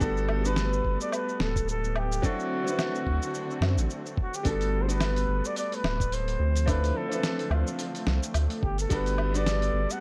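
A breathy, whispered flugelhorn melody with delay floats over a brilliant baby grand piano with audible action noise, veiled con sordino strings in the background, a round, deep analog bass with tube saturation and a gritty, overdriven sampler-style kit of fat snare, hi-hat, shaker and woodblock with a thumpy electronic kick in this blissful, relaxed sunset chillout excerpt at 108 BPM, swung on 16ths in G major and moving between Gmaj9, D7 and Dm7 in a dark, small-room production.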